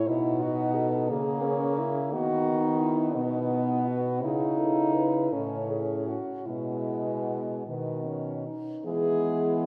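Heard from further back in a church with a long, wet reverb of about 2.8 seconds, this short classical passage for horn quartet sounds distant and roomy, drawn from a longer piece. It is elegiac and yearning, moving slowly at 50-59 BPM in dotted quarters in 6/8, with a rubato feel in E major, tuned to A4 = 443 Hz. Three mellow French horns carry the upper voices: one sings the melody between D#4 and B4, another supplies accompaniment from D#3 to E4, and a third adds a second line from G#3 to E4, entering at 0.1 s. Beneath them, a clear French horn takes the bass from A2 to E3, set up front with light vibrato and a soft attack. The harmony passes through B, C#m6, B/D#, C#m, A, E/B and B before resting on E at 8.9 s. The melody horn finishes at 9.6 s, while the other three horns play on to about 9.7 s.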